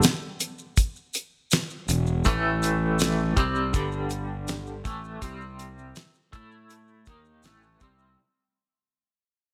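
Hazy and trippy, this short psychedelic rock excerpt moves at 81 BPM in a straight 4/4 and fades out across its full 8.2 seconds. A twangy, clean electric guitar plays a picked, compressed riff up front, double-tracked and colored by tremolo. A damped 70s drum kit sits alongside it with a fat snare, a tight kick and hi-hat, sounding dry and polished, while grainy maracas stay close and mellow in the background. At 1.9 seconds a fuzz-toned fingered bass enters, round and punchy with overdrive, as the chords move through E5, A5, G5 and C5. Light reverb and a small room ambience frame the performance.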